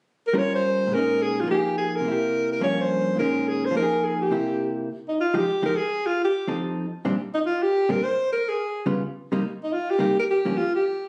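A smoky, moody jazz excerpt cut from a longer piece, swinging in 4/4 at a brisk pace. A warm alto saxophone carries the melody up front, playing a jazz-style solo line with vibrato and a plate reverb sheen. Beside it, a dark, clean hollow-body electric guitar picks the accompaniment, its compressed tone sitting equally forward, and it drops out at 10.6 seconds while the saxophone continues until 11.1 seconds. The harmony moves through minor seventh and dominant colours such as Gm7b5, Fm11 and Db7#11, with brief moments where the chords fall away. The sound has the feel of a phone recording in a club, with moderate room reverb and compression.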